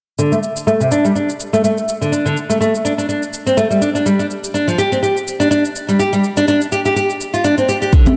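Afro house at 124 BPM with a spiritual, driving mood, this excerpt sets a bright, fingerpicked nylon-string guitar up front, its classical arpeggios carrying finger squeak through sidechain pumping, a low-pass filter sweep and digital delay, over a layered electronic shaker. A deep, produced electronic kick drum lands only at 7.9 s, and ringing, close acoustic congas arrive at 8.1 s. A moderate, lush hall reverb surrounds the parts.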